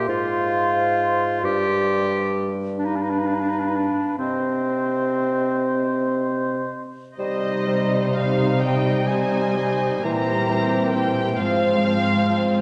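An elegiac, yearning slow movement for symphony orchestra in C minor opens with woodwinds alone: an airy flute and a gently vibrato-tinged oboe in the upper register, a bright clarinet and an up-front, close-miked bassoon supporting below, moving at a rubato 38-45 BPM in 6/8. Flute and oboe fall away at 6.8 s, and at 7.2 s a muted, con sordino string section enters, with violins carrying a veiled melody over a second violin line, soft-edged violas and dark cellos on the bass, while clarinet and bassoon continue. The whole ensemble sits in a wet concert-hall reverb, and the passage is cut from a longer piece.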